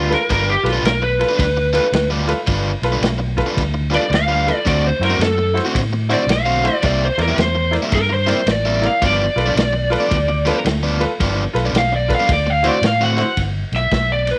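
Electric blues shuffle in G mixolydian at 110 BPM, swaggering and gritty, with a 64% swing on the eighth notes, cut from a longer piece. A lead guitar through a small cranked amp carries the melody up front as a solo from the opening until 13.4 seconds, its overdriven, picked tone lo-fi and warm. Beneath it an overdriven electric guitar plays a compressed riff, while a fingered electric bass sits round, dark and punchy at the bottom. A bright concert grand piano adds brilliant, slightly worn accompaniment, and a vintage drum kit of kick, snare and ride sounds muffled and rolled-off, with a tight kick. The changes move through G7, D7 and C7 before resolving to G at 13.4 seconds, and the whole band sits in light reverb with small room ambience.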